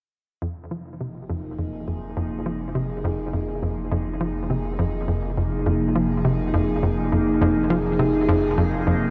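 The recording sits in a vast, echoing space, drenched in cathedral-like reverb with a cassette-tape haze over the whole mix. This is a short cut from a longer piece of ambient, sequencer-driven space music in F minor, moving at 103 BPM in a straight 4/4, with a cosmic, hypnotic mood resting on a single Fm7 chord. A hollow, bouncy square-wave pluck carries the riff up front from 0.4 seconds, its detuned tone edged with a noise layer, softened by chorus and trailed by tape echo. A deep, round sine sub bass holds a mellow low F beneath it, lightly thickened by tube saturation. At 1.1 seconds an evolving wavetable pad joins with bright, morphing sustained chords, colored by phaser and blooming into shimmer reverb. All three parts gradually fade in across the passage, which runs to 9.1 seconds.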